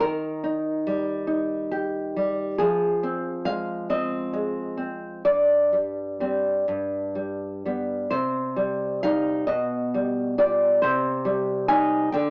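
A fingerpicked nylon-string guitar with old strings and a woody, up-front tone plays alone through this 12.3-second fragment of a longer romantic classical piece in C minor, unfolding in a rubato 6/8 at around 42-48 dotted-quarter beats per minute, with an intimate, passionate mood as the harmony moves from Eb through Fm, Gsus4 and G to settle on Cm, all heard through moderate spring reverb and the small-speaker sound of a home cassette recording with a faint mains hum.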